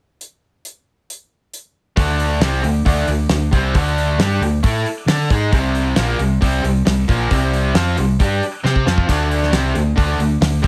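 Lightly reverberant, this swaggering, driving classic rock excerpt opens with a damped 70s drum kit alone, its dry, fat snare, tight kick and dark cymbals up front, before an overdriven, bright semi-hollow guitar riff, a distorted guitar tucked in the background and a round, amped hollow-body short-scale bass all enter at 2.0 seconds over D5 and C5 power chords, with a drum fill at 8.6 seconds.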